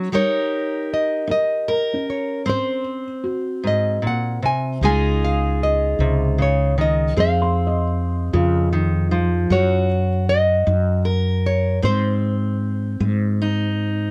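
A gentle, unhurried 6/8 lilt carries this tender, heartfelt folk passage, cut from a longer piece. A fingerpicked steel-string dreadnought guitar sets the accompaniment from the first moment, its full-bodied tone sitting close, and a nylon-string guitar enters almost at once with the classical-toned melody, the faint squeak of fingers on its strings caught by the detailed microphones. A felt-muted upright piano adds soft arpeggios from 1.3 s, its thick-felt sound intimate and hushed, with the action noise of the instrument audible beneath the notes. At 4.8 s a mellow fretless electric bass arrives up front, round and punchy, grounding the harmony as it moves through Dbadd9, Fm and Ebm/Gb before settling on Ab. The recording is dry and close, giving the whole performance a direct, heartfelt intimacy.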